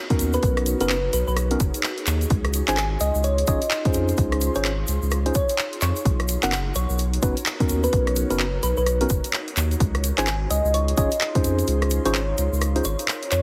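A punchy, overdriven electronic kick sits up front in this sunny, soulful two-step UK garage excerpt, driving a swung groove until it drops out near the end. Beside it, a deep, thick sine sub bass holds sustained notes colored by tube saturation. A layered house kit of handclaps, tape-toned hi-hats and rim clicks fills out the rhythm, along with a grainy, bright tube shaker in the background. A mellow tine electric piano plays stabs carrying vintage 12-bit sampler grit and digital delay, while a round, thumb-piano-like FM pluck carries the melody with analog chorus and its own delay. Further back, an ethereal, airy pad of detuned sawtooth and triangle voices sustains chords alternating between Bmaj9 and C#maj9, treated with ensemble chorus, reverb and sidechain pumping, and the whole mix has a heavily compressed radio sound with light reverb.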